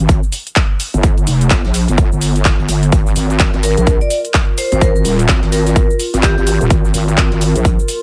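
Bass house with a bouncy, aggressive swing, built on a heavy, saturated wobble bass with sidechain pumping and a punchy, overdriven electronic kick up front, layered with overdriven big-room handclaps, hi-hat and shaker and a very quiet acoustic brush kit, while a bright, ringing vibraphone melody with tape echo enters at 3.6 seconds and a mellow, nostalgic, warbling lo-fi pad drifts in behind it at 3.8 seconds in a small-room ambience.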